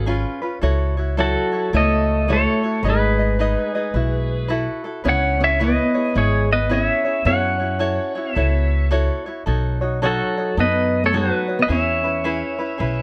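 Swung eighths at 108 BPM in 4/4 carry this sunny, languid Hawaiian excerpt, where a twangy, compressed pedal steel guitar sings the melody up front with slide and volume swells over a dark, fingerpicked parlour acoustic guitar second line, a light, bright tenor ukulele, and a woody pizzicato upright bass, all four playing throughout the 13 seconds in light reverb as the chords move from C#7 through F#m7 and B9 to E6.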